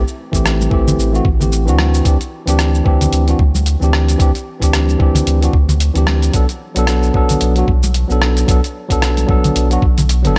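Wistful and relaxed, this short excerpt from a longer sunset chillout piece moves at 112 BPM with a swung sixteenth feel, as a bright, clean tine electric piano sits up front with tape echo over chords of Am7, D9sus4 and Bm7, a deep, round sine sub bass holds sustained notes underneath, a gritty, compressed sampler-style soul kit of hi-hat, rim click and shaker joins at 0.1 seconds, followed at 0.3 seconds by a thumpy electronic kick in the background, and close acoustic congas enter at 0.6 seconds, all set in a digital ambience.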